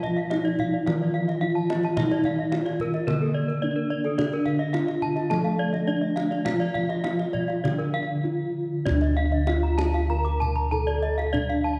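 A moderate concert-hall reverb surrounds this short cut from a longer Balinese gamelan piece, which is hypnotic and brilliant, in D pelog at 97 to 109 BPM in a straight 4/4. A mellow, soft bronze metallophone, struck with padded disc mallets, carries the melody. Its paired tuning gives shimmering beats within a boxy small-room tone. Beneath it, a second metallophone played with a wooden mallet sits in the background as accompaniment, and close-miked bossed gongs give a round, full, dry bass. Two horn-mallet metallophones spin arpeggios above: one bright and airy with a slapback echo, the other dark and smooth. A tight, distant kendang struck with hard hands runs through the piece and plays a drum fill from 8.4 to 8.9 seconds, where the accompaniment stops and a new section begins that runs to the end at 11.8 seconds.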